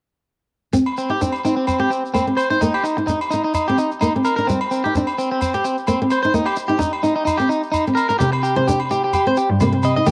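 A slightly broken-up, twangy electric guitar plays up-front arpeggios through tape echo in this bittersweet, danceable highlife guitar band excerpt at 129 BPM in C minor, over fingerpicked flamenco guitar with fresh strings, a grainy shekere and distant ringing agogo bells, with a rich, bowed cello with vibrato joining on bass at 8.2 s, the home cassette recording carrying moderate spring reverb.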